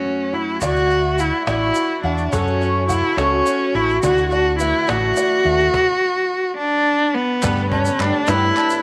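In a straight 6/8 at 70 BPM, this uplifting indie folk excerpt builds around an up-front bowed cello carrying the melody with vibrato and portamento, opening over a brief fingerpicked steel-string guitar with audible finger squeak before a shimmering twelve-string guitar with analog chorus takes over at 0.6 seconds alongside woody upright piano arpeggios, a round, punchy electric bass, a cajon with faint snares and a grainy tube shaker. A felt-muted upright piano with audible action noise slips in at 4.0 seconds, and after a chordless moment, crisp group handclaps arrive at 7.4 seconds as the harmony lifts to Gadd9. The whole sits in a moderate echo-chamber reverb with small-room ambience, moving between F#m and Dadd9 before that final shift.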